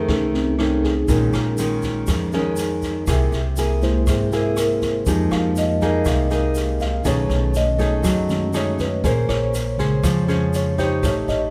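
Bossa nova with a sunny, relaxed mood: a mellow, clean tine electric piano takes the solo over fingerpicked nylon-string guitar sitting up front, woody pizzicato upright bass, an acoustic jazz kit with a boomy kick, rim click and snare, and a grainy, bright tube shaker tucked in the background from 1.1 s, set in a moderate recital-hall reverb as the chords move through Bbm7, Caug7, Fm11 and B13 in this brief cut from a longer piece.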